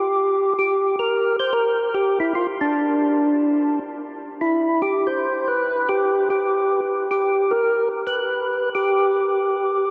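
Jazz with a greasy, bluesy mood and a swung 4/4 feel, this short fragment features a lone percussive tonewheel organ playing solo from 0.0 to 9.9 seconds, sitting up front in the mid register. Its fat, lightly overdriven tone carries third harmonic percussion, vibrato and a slow rotary speaker. A huge, wet reverb places the organ in a vast, echoing space.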